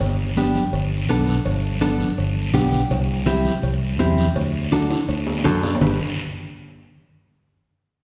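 Joyful and sunny, this cumbia excerpt puts a round, punchy fingered electric bass up front, joined at 0.4 seconds by a dark, compressed mellow electric guitar, while damped, soft-handed congas sit in the background beneath ringing cowbell and timbales and a raspy guiro, the mix set in the wet reverb of a church or concert hall until a drum fill at 4.9 seconds and a clean electric guitar fill at 5.3 seconds lead into a new section.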